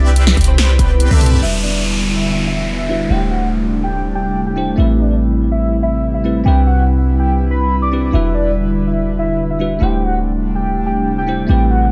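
A deep, boomy 808-style bass anchors this bittersweet, emotional future bass excerpt in E minor at 143 BPM with a half-time feel, opening on a drop where a fat, detuned sawtooth polysynth riff, a punchy layered electronic kick and a big-room dance drum kit with a closing fill all finish by 1.4 s, after which a bell-like tine electric piano and a downlifter join the velvety, chorused synth lead melody and the airy, breathy pad, the synths and bass pumping with sidechain inside a dreamy plate reverb over chords moving through Cmaj7, Em7, D7sus4 and Am7.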